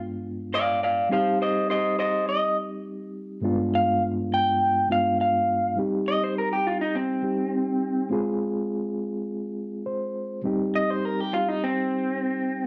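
A straight 4/4 pulse carries this smoky, soulful minor blues, a fragment cut from a longer piece. A reedy electric piano sets up the accompaniment from the first moment, its fast tremolo shimmering through its built-in speakers as the changes move from G7b9 to Cm and later touch on Fm. At 0.5 seconds an electric guitar enters up front with a fingered solo through a small old amp, its tone slightly broken-up, compressed and lo-fi. The solo runs across two matching passages, with the second beginning at 5.8 seconds. Around 9.6 seconds the clean electric piano slips in a brief fill before the harmony settles back on Cm, all held in a light reverb.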